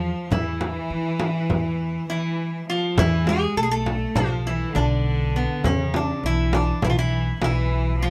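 Stately and warm, this short Turkish makam ensemble passage in E hicaz moves at 203 eighth-note beats per minute in 9/8, with a bright, metallic lap resonator guitar carrying the slide melody with fingerpicks up front, a bowed studio cello section adding a smooth-topped, earthy second line with light vibrato, a woody, thumpy pizzicato upright bass on gut strings holding the low end, and a frame drum entering at 0.3 s, all captured with close, detailed microphones and little reverb.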